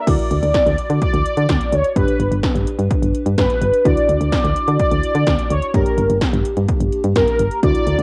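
A straight, driving feel propels this bright, upbeat synth-pop snippet from a longer piece, with punchy 80s electronic pad drums (gated snare, metallic hi-hats, crash and kick) and a round, solid FM bass sitting up front from 0.1 s. Over a chord cycle that moves from Dadd9 to G and finally darkens to G minor, a brassy, detuned synth brass carries the melody with vibrato, chorus and phaser, backed by a lush, dreamy FM electric piano with a soft pad layer and a cassette-tape tint. A swirling phased string machine is barely audible at the very start and again from 7.6 s, all within a light reverb and the character of a home cassette recording.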